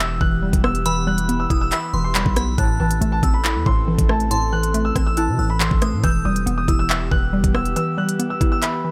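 Menacing and cold, this short drill cut from a longer hip hop piece moves with a half-time feel over a dark minor progression. A concert grand piano carries the high melody with an open, long-sustaining tone and tape echo, while a hollow, detuned square-wave pluck with chorus bounces underneath as accompaniment. A warbling, lo-fi pad built from sawtooth and triangle tones holds nostalgic sustained chords, and a deep, sine-based 808-style bass with a fast attack decays long beneath it until 7.7 seconds. The electronic drill kit sits up front from 0.2 seconds, with a knocking kick, crisp hi-hats, handclaps and rim clicks. From 0.9 to 6.9 seconds a glassy, crystalline FM bell adds a bright second line with chorus and tape echo, and the dry mix carries a faint mains hum.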